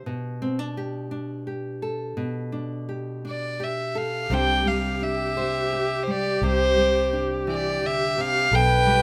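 A rich, floating violin carries the melody of this intimate, hopeful acoustic folk-pop ballad in C major, entering at 3.3 seconds with an airy, sul tasto bow over a bright, fingerpicked nylon-string guitar that opens the piece alone at a slow 57 BPM in 6/8. At 4.3 seconds, as the harmony moves from Gadd9/B to Csus2, a close viola adds an expressive second line with vibrato and portamento, while a dark, foam-muted vintage electric bass brings a round, punchy low end. Light reverb surrounds this short passage cut from a longer piece.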